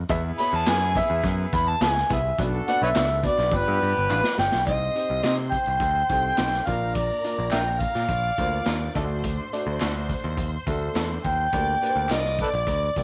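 A punchy, up-front picked electric bass opens this urgent, driving excerpt of 1960s-style soul, joined almost at once by a raw garage drum kit with a boomy kick, saturated sound and rolled-off top, plus tambourine and group handclaps in the background. An overdriven, amplified harmonica carries the melody up front, gritty and jazz-inflected, with tongue slaps, scooped notes and light vibrato. Beneath it, a woody upright piano with audible action noise plays accompaniment, while a dark, slightly broken-up electric guitar adds spring-reverbed stabs from the background. A clear, tight horn section supplies a second line until 4.4 seconds, and a drum fill from 3.5 seconds leads into a new section where a lush, bowed symphonic violin section takes over that role from 4.7 seconds. Light reverb and small-room ambience frame the whole mix.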